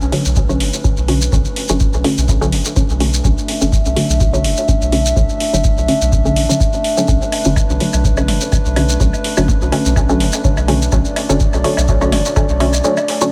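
A moody analog pad, nasal and detuned with a slow attack and long release, opens this deep, hypnotic dub techno piece on a single Bm7 chord, joined at once by a round, soft sub bass and a grainy, close-miked shekere. Muted sawtooth chord stabs follow almost immediately, their filter swept across the whole passage and thickened with chorus, phaser and dub echo, while the pad and bass breathe with sidechain pumping. A dry, metallic electronic hi-hat enters with the stabs, and a deep analog kick drum arrives at 0.4 seconds, both set in a small room ambience. The groove sits in 4/4 with a light swing on the sixteenths. At 7.3 seconds, overdriven electronic woodblock and toms slip in behind the mix, pumping and echoing, all under a light reverb that suits the cut-from-a-longer-track feel.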